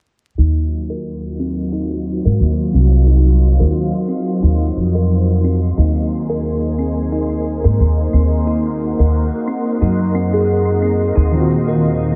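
Trip hop at 89 BPM in Eb dorian, melancholic and brooding, with a lightly swung 16th feel and a dreamy mix soaked in long ambient reverb, vinyl crackle and a low-pass filter. A vintage string machine lays slow-attack sawtooth cello chords through phaser and ensemble chorus, while a tinkling, slightly out-of-tune music box spins arpeggios through tape echo and a filter sweep, over a woody pizzicato upright bass up front and a barely audible egg shaker. The harmony moves from Ebm69 to Abadd9/Eb and back, and at 11.3 seconds a soft, felt-muted upright piano enters with tremolo and tape echo just before this excerpt ends at 12.2 seconds.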